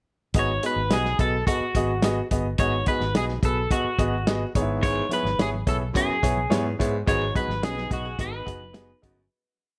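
A small-room sound frames this passionate, driving 1960s-style soul piece at 107 BPM, where a lo-fi, muffled, backbeat drum kit, a round, foam-muted bass playing a syncopated line with muted ghost notes and a clear, intimate baby grand playing eighth-note chords support a twangy, slightly broken-up electric guitar hook with subtle chorus and slapback echo. Gritty, distant baritone saxophone punctuation joins at 4.8 seconds, very quiet congas follow at 5.0 seconds, and brief dark hollow-body guitar fills in thirds arrive at 7.6 seconds as the piece fades out from 7.1 seconds over its G#m7 and C#m7/G# chords.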